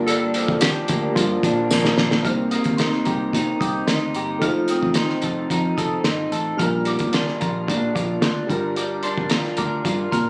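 Recorded on a phone in a modest room, this wistful, mellow indie and bedroom pop fragment at 110 BPM in C dorian has a hazy, lo-fi closeness. A slightly broken-up guitar through a small old amp, with warbly pitch drift, sits up front beside a muffled, cloth-damped drum kit with a fat snare. Beneath them, a dark, foam-muted fingered bass anchors the low end and a woody, slightly detuned upright piano with cassette-tape character sits in the background. Round, detuned analog keys carry the melody only until 1.9 s, and a jingly tambourine appears briefly from 0.6 s, overlapping a drum fill at 1.7 s. From 2.2 s a soft, pure FM synth bell with lush chorus sings a high second line over chords moving from Cm7 through F7 and Bb6 back to Gm7.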